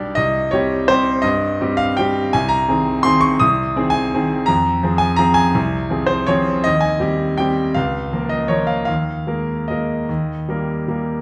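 A wet recital hall reverb surrounds this short excerpt, giving the sound the spacious bloom of a church or concert hall. A solo concert grand piano sits up front, bright and brilliant and smooth across its range, with a deep bass and a slightly vintage character. It is a classical waltz in 3/4 and Ab major, moving at roughly 146 to 175 BPM with a rubato feel that lets the pulse breathe. The mood is sparkling and graceful, and the piano spans a broad register from low B1 up to Eb6. The harmony moves from Cm through Fm and Bbm/Db to an Ebsus4 that resolves onto Eb at 10.1 seconds, just before the excerpt cuts off at 11.2 seconds.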